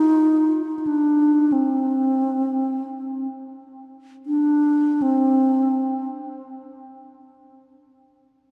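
In free time, this spacious, meditative world fragment in C minor, tuned to A4 = 444 Hz, features a breathy, bright bass flute playing solo from 0.0 to 6.1 s between C4 and Eb4, close-miked and up front with vibrato, a soft attack and a diffuse ambient delay, all set within a huge, wet ambient reverb with a 4.6-second decay and a dark, warm production.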